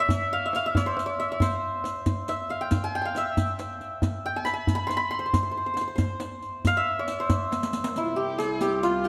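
A festive six-eight pulse from a deep, soft-handed tombak and a riq with dark, vintage-sounding jingles carries this Persian modal ensemble piece, while a shimmering, ringing santur sits up front with the melody throughout. After a drum fill at 7.5 seconds, the tombak drops out at 7.8 seconds. The riq carries on as an earthy chamber cello section lays down a low drone and a distant kamancheh enters at 8.0 seconds with a smooth second line full of vibrato and portamento. The close, detailed sound has light reverb, and the passage is cut from a longer piece.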